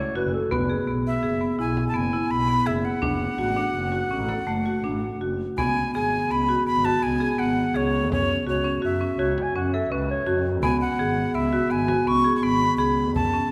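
Set in an uneven 7/4 at 167 BPM with a straight feel, this short passage of contemporary chamber music, cut from a longer piece, has a pensive, hypnotic mood. A bowed double bass holds the low end throughout, smooth and even with vibrato, while a marimba struck with hard mallets spins up-front, percussive arpeggios in a boxy, close-sounding space. A breathy, bright jazz flute takes the melody from 1.1 seconds, its straight tone marked by a crisp, chiffy attack and a slightly reedy edge. A dark, distant clarinet in classical style briefly opens the passage and returns around 9.2 seconds as a second line, and a deep frame drum played with hard hands sits very quietly beneath. The harmony moves from F#m through E/F# and D/F# before shifting to C#7(no3), F#7(no3) and a closing C#7sus4, all bathed in a wet concert hall reverb.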